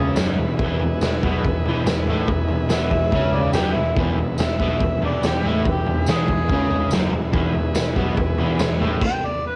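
A lightly reverberant home cassette recording captures a swaggering, rowdy garage rock excerpt in E major at 142 BPM: a buzzy combo organ opens with a quick fill, then holds heavy-vibrato chords in the background, while a crunchy, double-tracked overdriven guitar riff and a punchy fuzz bass drive under a gritty, up-front drum kit with a jingly tambourine; a mellow, distant harmonica takes the overdriven solo melody from 2.7 seconds, and the band stops at 9.0 seconds as the harmonica carries on alone.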